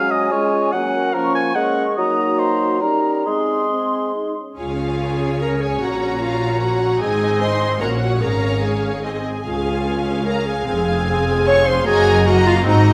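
In a rubato 3/4 moving at 134-152 BPM, this fast, dramatic romantic orchestral passage in Db major, cut from a longer piece, feels urgent and stormy. It opens with woodwinds and brass: an airy flute section, a mellow, up-front cor anglais and a dark, distant clarinet weave second lines over a smooth-topped bassoon, while a dark French horn section holds sustained chords. At 4.6 seconds the strings take over, with a lush, focused violin section carrying the melody high above a clearer, more distant second violin line and even, smooth violas. Beneath them, an intense cello section and a clear double bass section anchor the bass, and the clarinet continues through to 12.9 seconds. The harmony moves from Db through Gb and Ab, touching Fm before settling on a Gb6 chord, all set in a moderate scoring-stage reverb.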